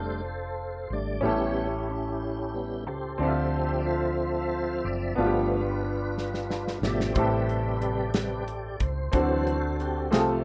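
A lightly overdriven tonewheel organ with slow rotary speaker and chorus vibrato takes the solo in this soulful, uplifting slow gospel fragment in 6/8 at 61 BPM, held up by a bright, worn grand piano and a dark, round hollow-body bass moving through F6, A7, Dm7, G7, Am7 and D7, while a soul drum kit with a tight kick enters at 6.2 seconds with a fill, all in a small room on a rough home demo.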